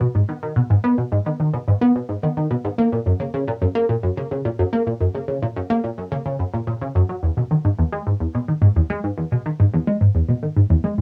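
Ambient music at 108 BPM in 4/4 with a straight feel, set in E lydian and tuned to A4 = 435 Hz, carrying a cosmic, luminous mood. A single tight sequenced synth plays alone for the full 11.0 seconds, moving between E2 and B3 with a driving, sawtooth-and-square-wave voice that is detuned and shaped by a filter pluck with a fast attack and sustained tails. Chorus, phaser, cassette tape coloring and delay sit on this synth, which is placed up front in the mix. The sound lives in a wet booth ambience with a short 0.2-second decay, captured as a home recording on cassette. This is a cut from a longer piece, presenting one continuous section.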